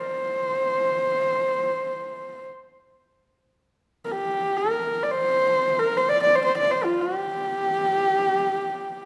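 Mongolian traditional music in free time, this windswept, solemn excerpt features a lone horsehead fiddle played close and up front, its husky, nasal tone carrying light vibrato, gliding portamento and an airy bow against a moderate stage reverb, before the line slows from 6.8 seconds to the end.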